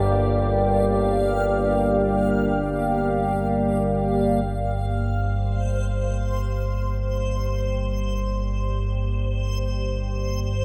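Dark and unsettling, this ambient fragment from a longer piece rests on an up-front, nasal analog drone with chorus beneath a bright, detuned resonant pad holding sustained chords, while a quieter, dreamy reversed texture with a granular grain and its own reverb hovers higher, all three sounding throughout the 10.6 seconds inside a cavernous cathedral reverb.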